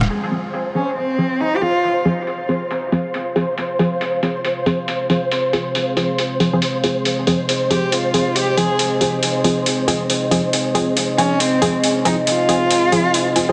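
A dark, nasal cello with a woody, bowed vibrato sits up front in this brooding, meditative deep dubstep excerpt, stepping in briefly at 0.8 seconds and returning at 7.7 seconds with dub echo trailing its lines. Underneath, muted, detuned chord stabs with a filter pluck and dub echo sound throughout, while a gritty, pitched-down sampler-style drum kit of hi-hat and rim click rides a swung, half-time feel under a filter sweep. A flickering, granular texture enters at 0.4 seconds, and a moody square-and-sawtooth analog pad with ring modulation fades in at 1.9 seconds under its own filter sweep, all set in a huge ambient reverb with a heavily compressed, radio-like sound.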